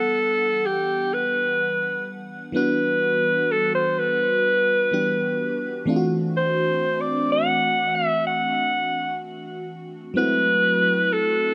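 A straight 4/4 pulse at 63 BPM carries this moody, late-night R&B excerpt in E minor, tuned to A4 = 437 Hz, where a bright, punchy alto saxophone with light vibrato plays the solo melody up front over a lush, dreamy FM electric piano layered with a soft pad and treated with chorus and phaser, as the chords move from Em7 to D9 at 5.9 seconds and F#m7b5 at 10.2 seconds in a small room with light reverb.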